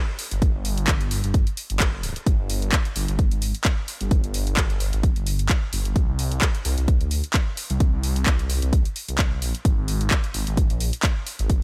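Bass house at 130 BPM in G phrygian with a 16th-note swing, this gritty, aggressive excerpt pairs a punchy, overdriven electronic kick at the front with a layered house kit of handclaps and bright hats, both drum parts carrying overdrive, beneath a thick, swirling detuned saw bass that sits between G1 and D2 through phaser and overdrive, pumping against the sidechain, all in a dry, close mix.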